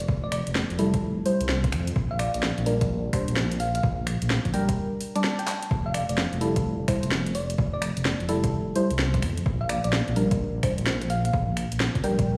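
A dark, detuned sawtooth bass rumbles up front from the very start of this bouncy, soulful UK garage excerpt, its beating low notes pumping against the sidechain. Alongside it, a punchy, tape-warm electronic kick drives a two-step groove with swung sixteenths, while an overdriven, layered garage kit of finger snaps, handclaps, hi-hat and a cracking snare sits forward in the mix and rolls into a drum fill at 5.5 seconds. From 0.8 seconds, a soft, mellow chord stab with ring modulation, a moving notch and chorus and delay traces the shift between Fmaj9 and Bb6. Above it all, a round, tine-like FM pluck resembling a thumb piano carries a gentle melody, its long release smeared by its own chorus and digital delay. The whole piece sounds as if it is played on a big sound system in a bare stone room, with a light reverb over it.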